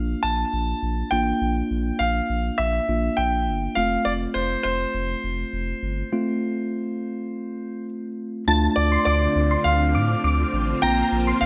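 A bright, present concert grand carries the melody with tape echo over a mellow tine electric piano and a round, deep analog bass placed up front, opening this driving, cool pop passage in D minor at 102 BPM, cut from a longer piece. After a break at 6.1 s, a shimmering FM bell enters at 8.5 s with chorus, tremolo and tape echo, and a lush, vintage string machine joins at 9.1 s with slow-attack sustained chords. The moderate hall reverb gives a soft, rolled-off sheen as the harmony moves from Bb and F to Dm7 and Bbsus2.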